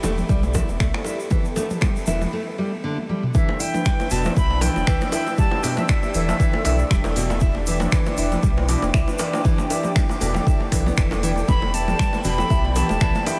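Opening on a Gadd9/E chord, this spiritual afro house excerpt at 118 BPM layers a fingerpicked nylon-string guitar with 12-bit sampler grit, a moody square-wave pad, sawtooth synth brass stabs with chorus and phaser, a round sine sub bass, tight high-tuned bongos, close dry congas, a grainy egg shaker, finger snaps, smooth hats and toms from an afro-pop kit and a deep up-front electronic kick, all heard through a dreamy, reverb-soaked mix, before a drum fill at 2.8 seconds leads into the drop at 3.3 seconds, where, from 3.4 seconds, an airy silver concert flute with vibrato and tape echo carries the melody.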